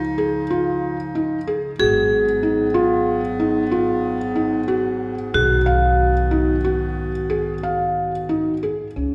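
Set in a lopsided 11/8 with a straight feel, this restless yet hopeful piece of contemporary chamber music is a short passage cut from a longer work. A felt-muted upright piano sits up front with intimate arpeggios, its thick felt and audible action noise lending a mellow, vintage character. Beneath it, a pizzicato upright bass on gut strings gives a woody, thumpy foundation, while a clear woodwind section holds sustained chords with light vibrato and a soft attack. From 1.8 seconds, a vibraphone struck with hard mallets adds a ringing, metallic second line with slow motor vibrato. The harmony moves from Dbadd9 to Abm7 and reaches Cb6 at 5.3 seconds, all wrapped in a wet concert hall reverb with a long tail.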